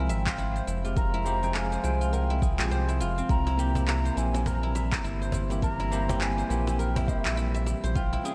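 A swung 103 BPM groove in 4/4 drives this meditative, hypnotic slice of organic downtempo, with a deep electronic kick and produced cabasa and handclaps set in studio reverb, while a woody cajon with faint snares joins in the background at 3.5 s. A round, dark analog bass sits up front with tube saturation and sidechain pumping, as bell-like tine electric piano, silvery fingerpicked guzheng arpeggios touched with 12-bit sampler grit, and a very quiet, tense bowed-like drone outline a move from Fmadd9 to C7 at 3.3 s. Above them a breathy bamboo bansuri carries the melody with vibrato and tape echo, all framed by a lush hall reverb and a big arena sound.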